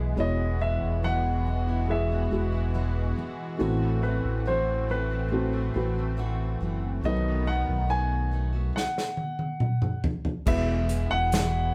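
A deep, sine-toned sub bass with an octave sits up front in this tender, emotional pop ballad, holding the low end from E1 to B1 at a slow 70 BPM in 4/4 with a straight feel, in E major. Over it, a grand piano carries the melody with an intimate, natural tone and audible action noise, while a felt-muted upright piano adds soft, dark, mellow accompaniment. Behind them, a lush, detuned sawtooth pad with chorus holds sustained chords, and a full-bodied steel-string dreadnought guitar picks arpeggios in the background. The harmony moves from E through Am6 to B7. At 8.8 s an acoustic drum kit played with bundle sticks enters with a fill, its tight kick and medium-tuned snare sitting forward in a small room, and the music returns to E at 10.5 s. The band plays together in one room under a wet studio reverb, in a passage cut from a longer piece.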